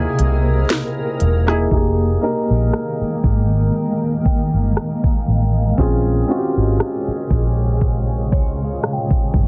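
Heavily compressed and low-pass filtered with a light reverb, this dreamy, smooth contemporary R&B fragment sounds like it is coming through a radio, moving at a slow 59 BPM in 4/4 with a gentle swing on the sixteenths. A felt-muted upright piano plays soft, intimate accompaniment while a granular cloud pad holds blurred, detuned chords that bloom slowly, treated with its own reverb, a phaser and sidechain pumping. Up front, a vintage muted fingered electric bass sits low, dark and round with an amped, foam-muted tone. The trap drum kit joins at 0.2 seconds with a knocking kick, sharp snare, crisp hats and rim clicks, all roughened by a 12-bit sampler grit. From 2.2 seconds a glassy FM synth bell adds crystalline, decaying tones in the background, coloured by chorus, phaser and digital delay. The harmony opens on C7alt, settles into a rootless Fm11 at 1.7 seconds, and moves to Bbm9 later on.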